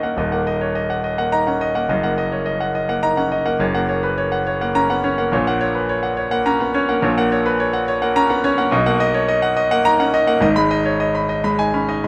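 A clear, polished concert grand piano plays alone from the opening, up front with deep bass reaching down to Eb1 and short-sustained notes as high as B5, in this brilliant, sparkling classical virtuoso study at 105 BPM in a rubato 3/4, tuned to A4 = 441 Hz, moving from Eb minor into F# major at 7.0 seconds under light reverb before this brief cut from a longer piece ends at 12.1 seconds.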